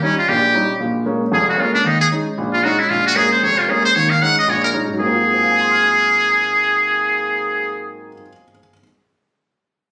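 A swinging 4/4 at a brisk 229 BPM in Ab mixolydian carries this relaxed jazz fragment, where a buzzy, roomy, metal-muted trumpet with light vibrato and scooped notes leads the melody through plate reverb until 7.8 s. Beneath it, an intimate concert grand piano with deep bass and audible action noise accompanies until 8.8 s, moving from Bbm7 and Eb7sus4 changes to an Ab13 at 5.0 s. It is all captured on a phone in the room with moderate studio reverb.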